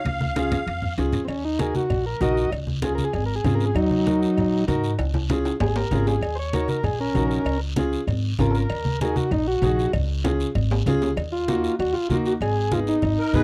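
Cumbia with a danceable, driving pulse, cut from a longer piece and captured as a dry, close 1970s-style studio recording with light reverb, opening on a brief reedy, shimmering musette accordion solo over a drum fill before a vintage combo organ with light vibrato enters at 1.2 seconds and takes the melody, soloing up front from 1.3 seconds. Underneath, a dark, woody pizzicato upright bass and a clear, boxy upright piano with audible action noise carry the harmony, while thick-skinned low-tuned congas, ringing timbales and cowbell, and a raspy, saturated guiro keep the groove moving. The accordion returns for a fleeting moment at 13.2 seconds, shortly after the chords shift from alternating Db and Ebm to a closing Abm.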